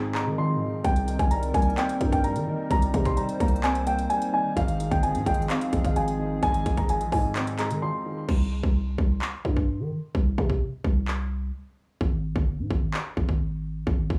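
A half-time trap groove drives this melancholic, hard-hitting hip hop excerpt, built on an up-front electronic kit of hard-clipped kick, crisp hi-hats, handclaps and crash, with a growling, buzzy 808-style bass underneath. Over chords moving between Ab6 and Cm7, a dark, boxy grand piano carries a high melody through a low-pass filter and tape echo, while a muted, intimate upright piano with audible action noise plays low accompaniment and a hollow, flute-like pad with chorus sits airy in the background. Around 8.3 seconds the pianos and pad stop and the hi-hats fall silent, leaving the other drums and the bass to carry the final stretch to 14.2 seconds.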